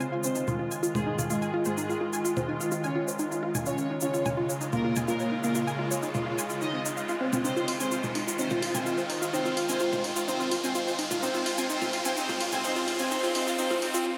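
Cinematic and driving, this melodic techno excerpt in F minor moves at 127 BPM in a straight 4/4, built entirely as a build-up over a cycle of Fm7 and Db chords. A fat, nasal analog lead carries the melody from the start, its detuned sawtooth tone thickened by a sub octave and ring modulation, dressed in lush chorus and delay, with vibrato and a filter sweep running across the whole passage. Alongside it, a punchy unison pluck spins arpeggios with a wave-folded, detuned bite and tape echo, while an evolving wavetable pad morphs through sustained chords with slow attack, ensemble chorus and its own reverb. A clear, earthy studio violin section sits in the background with a second line, bowed with light vibrato and shaped by a low-pass filter and tape echo, and filter sweeps also move through the pluck and the violins. A grainy, close and dry egg shaker and tape-toned electronic congas and hi-hat, re-recorded in a large room, keep the pulse, as an electronic riser climbs in at 3.5 seconds and runs to 14.1 seconds, all within a dreamy mix soaked in plate reverb.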